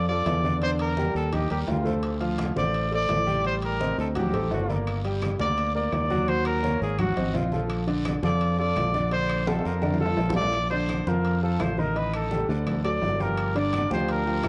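A vibrato-laden trumpet carries the melody up front in this festive, joyful salsa excerpt, moving at 169 BPM in a straight 4/4 and centered in Bb major, its tone distant and roomy with a pop-style solo voice. Beneath it, a round, punchy fingered electric bass sits dark and up front, while an intimate grand piano supplies the accompaniment, its natural sound carrying audible action noise. Thick-skinned, low-tuned congas from a large room, ringing metal-shelled timbales, and a raspy, close guiro all sit in the background, with very quiet, woody claves joining at 4.9 seconds. A drum fill from 9.5 to 10.5 seconds leads into a new section, and the harmony moves through rich extended chords such as Dmadd9, Ab9 and Bbmaj7 before closing on Gm7. The whole recording has a light reverb and a worn, warbling old-cassette quality with pitch drift and a muffled top end.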